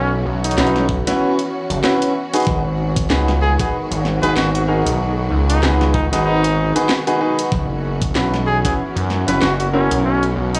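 A swaggering, playful glitch hop excerpt at 95 BPM in G# minor opens with a warm, vibrato-rich trumpet melody over a gritty, saturated synth bass that sits up front, while lush bowed strings in the background pump against the sidechain and an ethereal, airy pad shimmers very quietly above. Drum and bass kit hats and a cracking snare arrive at 0.4 seconds, bright baby grand piano stabs with analog delay and sidechain pumping follow at 0.6 seconds, and a knocking electronic kick joins at 0.9 seconds, with the swung 16ths giving the groove a loose bounce. The harmony moves from F#7sus4 to G#m7 and back, all set in a dry, gritty cassette-tinged ambience touched with studio reverb.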